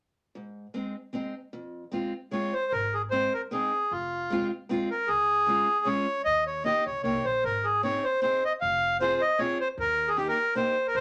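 Bouncy and festive, this alpine folk dance-band fragment in Ab major sways in 3/4 at 153 BPM with a light swing and some rubato, opening at 0.4 s with an up-front, boxy parlour-style picked steel-string acoustic guitar on old strings, joined at 2.3 s by a reedy, clear single-reed accordion carrying the mid-forward melody with a dry tuning, and at 2.7 s by a soft, woody pizzicato upright bass, all set in a lively studio room.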